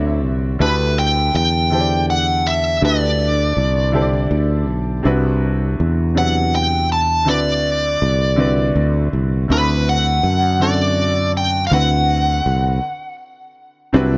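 A dry sound carries this short cut from a slow, sensual and tender R&B piece in 6/8 at 54 BPM, where a smooth, overdriven, picked lead guitar sings the melody up front over D13, G69/D and Cmaj9#11 harmonies. A clear concert grand piano with natural, deep low end supplies the accompaniment, while a growly, direct fretless electric bass sits forward and sustains beneath it. After a stop at 12.8 seconds, a reedy, very quiet tonewheel organ with chorus vibrato and rotary speaker slips in with sustained chords at 13.9 seconds.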